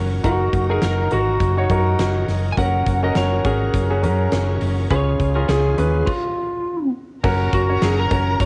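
Uplifting and anthemic, this piano-driven pop clip with a light swing pairs a polished, up-front baby grand and a round, punchy hollow-body bass with a very quiet tonewheel organ on slow rotary and a huge arena kit with a fat snare, while a dark, slightly broken-up lead guitar carries the melody; after a stop from 6.1 to 7.2 seconds, a smooth chamber violin section joins in the background, all with a lo-fi cassette haze.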